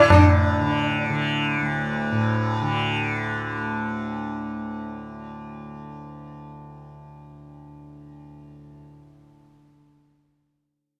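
Indian classical fragment at 132 BPM in 3/4 with an introspective, meditative mood, where a round, plectrum-plucked sitar melody around D4 rings with shimmering sympathetic strings and plate reverb from 0.0 to 1.4 s, while an up-front, softly plucked, buzzing tanpura drone spanning D2 to D3 holds from 0.0 to 9.8 s in a wet studio ambience.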